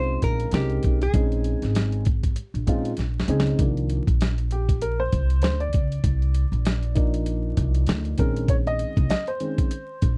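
This is a mellow, nocturnal jazz-hop excerpt at 98 BPM in 4/4, with a swung sixteenth-note feel and a dry, close 1970s-style studio sound dusted with vinyl crackle. A dark, clean hollow-body jazz guitar carries a brief picked melody that ends at 2.9 seconds, over a vintage baby grand piano whose intimate, smooth tone includes audible action noise. Woody pizzicato upright bass sits up front with a thumpy low end, beside a gritty, compressed boom bap sampler-style kit with a thumpy kick and medium-tuned snare, re-recorded in a large room. The drums come in at 0.2 seconds, and a fill from 3.0 to 3.6 seconds hands the spotlight to the piano, which takes a solo through to the end. The harmony moves from Bbm11 to Cm11 and back to Bbm11 at 8.2 seconds, keeping a dusky C phrygian colour.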